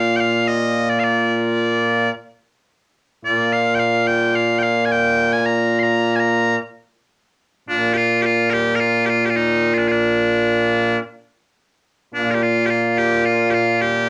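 Stirring and ceremonial, this short cut from a longer piece of Scottish traditional pipe music moves in a steady, straight 4/4. A solo bagpipe carries the whole fragment from 0.0 to 14.1 seconds, its piercing, continuous tone sitting up front and filling the space. The phrase is stated once and then heard again from 7.7 seconds, giving the passage a firm, processional shape. The instrument ranges from a low Bb2 up to a high C6, with a bright edge that cuts through at every point. A wet small-room reverb surrounds the pipes, and the home cassette recording lends the sound a homely character.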